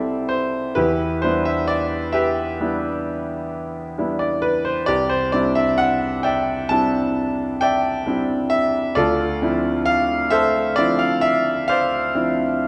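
In a rubato 9/8 lilt at 44 beats per minute, counted in dotted quarters, this serene, luminous impressionist solo piano excerpt in C major drifts through C6, Em7, Cadd9 and Dm9 harmonies, tuned slightly low at A4 = 437 Hz. The concert grand sits up front and sounds clear and open, spanning C2 to A5 with a deep bass. A wet recital hall reverb with a 1.6 second decay surrounds it for the full 12.7 seconds.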